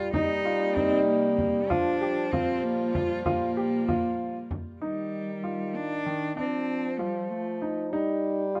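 A clear, focused bowed cello carries the melody from the start, joined at once by a mellow, distant French horn on a second line, sustained chamber strings with a reedy gut-string tone in the background, and a barely audible, bell-like celesta. This restless, pensive contemporary chamber excerpt moves in 5/8 at 192 BPM over chords such as Cm7, Gm7 and Ebmaj9, with a polished grand piano playing arpeggios up front and a frame drum played with soft hands until 4.8 seconds, when the strings also fall away. The piano and horn carry on to 8.6 seconds in a dark production with light reverb.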